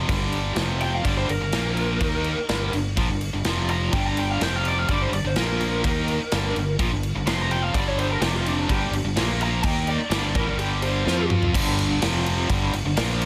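This aggressive, heavy hard rock excerpt opens with two picked electric guitars and an overdriven fingered bass laying down a G minor riff at 126 BPM in a straight 4/4. An up-front, tightly distorted guitar carries the riff, while a cranked stack guitar with overdrive and tremolo sits further back in the mix, and the growly bass, direct and amped, pushes hard underneath. A big acoustic rock kit joins almost at once, with a punchy kick, a medium-tuned snare, toms and crashing cymbals ringing in a large room. From 0.8 seconds a dark, lo-fi lead guitar, overdriven through a small cranked amp and trailed by digital delay, takes a solo over the power-chord changes. A drum fill at 11.1 seconds leads into a short closing section where the riff carries on, all under a light reverb.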